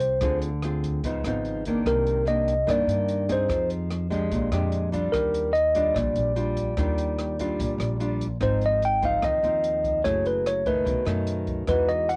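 Breezy and relaxed, this short fragment of a longer bossa nova moves at 146 BPM in a straight 4/4 in Eb major. A mellow tine electric piano carries the melody up front, its clean tone coming through a combo amp and coloured by cassette tape. A small-sounding, fingerpicked nylon-string guitar sits close beside it with warm accompaniment, also carrying a cassette tape colour, while a woody, thumpy pizzicato upright bass with steel strings holds the low end. An airy, polished open jazz drum kit stays further back, with hi-hat, rim click and a boomy kick, its small-room sound likewise tinted by tape. The harmony drifts through rich chords such as Dm7b5, Cm9 and Ebmaj9, then shifts at 8.4 seconds to Ab6, Gbm9 and B9 for a new passage. The whole piece has the intimate feel of a home cassette recording in a moderate booth with a short ambience.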